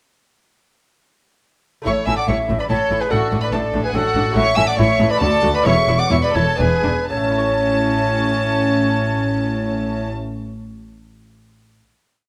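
In a straight 3/4 at 117-145 BPM, this brilliant, festive baroque-style concerto movement in A major opens with a delicate, fingerpicked lute rolling chords in the background, then an airy, wooden flute doubles the tune in sixths alongside a reedy, gut-string violin section carrying the melody, while a second violin section doubles it at the octave and in unison, a viola section adds repeated notes and sustained chords, and rich cello and double bass sections ground the bass, all captured closely in a moderate recital-hall reverb as the ritornello slows from 3.7 seconds into a final A chord held from 7.1 to 10.2 seconds.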